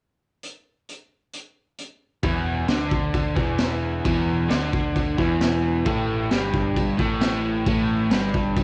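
A crunchy, double-tracked overdriven guitar riff charges in at 2.2 seconds alongside a growling, punchy picked bass, joining a gritty, boomy garage drum kit that opens alone at 0.4 seconds, giving this raw, menacing 132 BPM garage rock excerpt a lo-fi cassette home-recording feel in a small room.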